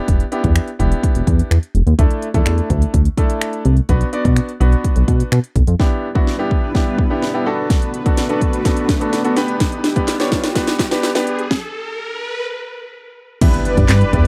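A clear concert grand piano opens this bittersweet, energetic dance-pop excerpt in E minor at 126 BPM, joined at once by a punchy, up-front house kit and a glossy, chorused synth bass pumping with sidechain, before the bass drops out at 5.8 seconds for a build-up where a thick, phaser-swept unison pad, a background riser, faint hollow group handclaps and a stop from 11.5 seconds lead to an impact at 13.4 seconds that brings back the bass under a brief detuned supersaw melody, all in a dry, close 1970s-style studio sound.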